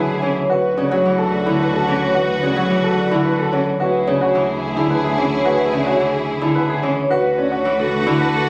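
A mellow vibraphone struck with soft mallets carries the melody in this short excerpt of hypnotic, propulsive minimalist classical pattern music in 3/4. Its ringing tone is shaped by a slow motor vibrato and has a boxy, small-room color. A smooth, vintage-sounding grand piano plays arpeggios, while a fingerpicked Celtic harp sits up front with low accompaniment. A bright soprano saxophone in classical style adds a second line from the background, and a lush, bowed symphonic string section holds clear, focused sustained chords with vibrato. A single close, rich double bass bows a steady low D, and the harmony moves from D69 to E13/D at 3.8 seconds before returning to D69 at 7.1 seconds, all bathed in a wet recital-hall reverb and captured on a phone in the room.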